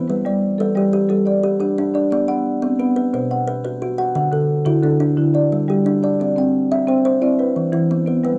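A dry, close, 1970s-style studio sound with light reverb frames this warm, rippling excerpt of Southern African traditional music, an mbira-style interlocking cycle in G major at 117 BPM in 12/8, where an up-front kalimba with a hollow-box, fingertip-plucked ring and a round, airy soft-mallet marimba on padauk bars both weave arpeggios from 0.0 to 8.4 seconds through G, Bm, D, C and Em.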